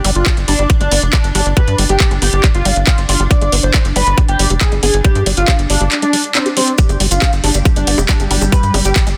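Psychedelic trance at 138 BPM in G major, driving and hypnotic, where an up-front electronic kick and a drum kit of bongos, handclaps and metallic hi-hats anchor a punchy sawtooth sequencer bass, while a squelchy, resonant acid bass riff with a filter sweep, 12-bit grit, phaser and digital delay sits in the background beside a bright, morphing wavetable pad of sustained chords with ensemble chorus and sidechain pumping, a screaming, guitar-like overdriven lead carries the melody through chorus, phaser, vibrato and dub echo, and grainy maracas join at 6.8 seconds in this dense, heavily limited cut from a longer piece.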